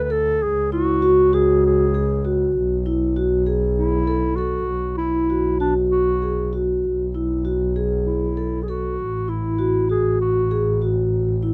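A dark, up-front solo clarinet carries the melody in a classical style, its smooth top giving an urgent yet pensive contemporary instrumental piece in 7/8 its voice before it drops out at 10.9 seconds. Beneath it, a vibraphone played with soft mallets and motor off rings out mellow, metallic arpeggios, while a single bowed double bass plays sul tasto with light vibrato and a soft attack, intimate and close. The dry, detailed sound keeps this short cut from a longer piece near and present, with a suspended chord arriving at 6.8 seconds.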